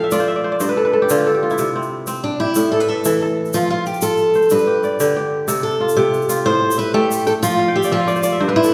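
This short piece, cut from a longer work, rings out in the reverberant bloom of a church or concert hall, and the lingering reflections give it a spacious glow. It is West African traditional string music with a hypnotic, warm mood, moving in a steady 12/8 metre. Up front, a crisp, ringing kora spins arpeggios across its broad range from the very start, while a grainy, bright egg shaker sits far back in the mix. At 2.2 seconds a picked steel-string acoustic guitar joins with a melody, its tone carrying an auditorium-like roundness, and from 5.5 seconds it takes a solo. The kora adds another fill at 7.6 seconds as the harmony settles onto a Dm11/F chord.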